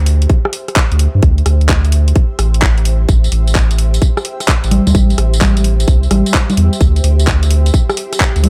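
A deep, saturated sub bass pumps up front through this skippy, soulful two-step UK garage excerpt at 129 BPM in A minor, joined by a tight layered electronic kick and a bright-hatted garage kit of congas, handclaps, rim click and tambourine swung on the sixteenths, while a faint, blurred granular pad drifts behind in its own reverb as Am7 gives way to D7sus2 at 6.8 seconds.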